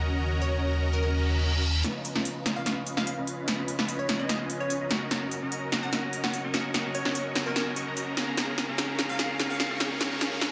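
Future bass in a half-time feel, dreamy and lush, where a huge, compressed supersaw riff with cassette-tape grit runs throughout, a thick detuned saw bass sits up front only until 1.8 seconds, a crystalline wavetable pluck with chorus and digital delay drifts in the background, a very quiet reverse cymbal and riser begin at 1.2 seconds, and a punchy big-room kit with crisp hats enters at 1.8 seconds as a filtered build-up on the supersaw moves through chords from Ebm7 to Db13 and Bbm7 in light reverb.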